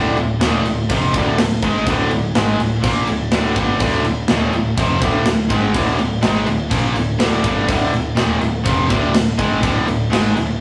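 A tight metal drum kit sits up front in this dark, epic heavy metal excerpt, its polished, airy sound carrying bright cymbals, a medium-tuned snare and a tight kick at 124 BPM in 4/4, entering at 0.2 s. Behind it, three bright guitars (one overdriven, one high-gain and distorted, and one overdriven and double-tracked) play a riff in D phrygian over a Dm chord, joined by a growling, overdriven picked bass. The rough rehearsal-room recording carries tube saturation and light studio reverb, and the passage is cut from a longer piece.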